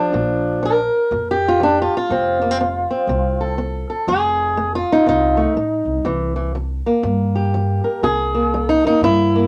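Rollicking and swaggering, this short cut from a longer acoustic country blues piece moves at 122 BPM in 4/4 with a 62% swing on the eighth notes. A fingerpicked swing-style acoustic guitar carries the melody up front, its tone dark and boxy as it ranges from G2 to Bb4. An upright bass joins at 0.1 seconds, played pizzicato on gut strings for a woody, thumpy low end that sits beneath the guitar. The harmony moves from Bb to F7 at 2.1 seconds and on to C7 at 6.0 seconds. A moderate studio reverb gives the duo a modest sense of room, and the tuning sits slightly sharp of standard pitch at A4 = 443 Hz.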